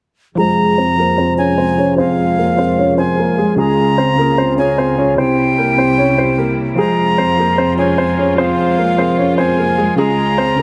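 A dark, boxy grand piano carries the melody through this eerie, brooding half-time hip hop excerpt, with a reedy, airy flute holding a second line high above through delay, a worn, slightly out-of-tune tine electric piano accompanying beneath, and a quieter bowed string section sustaining smooth chords over an Fm, Db and C progression, while a filter sweep runs throughout in a small, lightly reverberant room.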